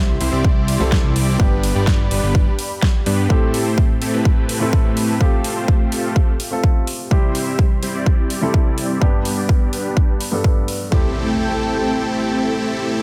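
Powerful and anthemic, this festival progressive house excerpt in A minor drives at 126 BPM in a straight 4/4, moving through C, G, Am7 and Fadd9 as a huge, detuned supersaw riff carries a filter sweep over a lush, warbling chorused pad that also sweeps, with a dark, mellow baby grand piano adding delayed accompaniment with audible action noise. A fat, saturated analog bass pumps beneath them only until 3.3 seconds, while a punchy, overdriven electronic kick sits up front alongside a big-room kit of huge snare and metallic hi-hats, all of the synths and piano breathing with sidechain pumping. Around 11 seconds the drums drop away and an electronic impact lands in a light reverb as the chords settle on Am7.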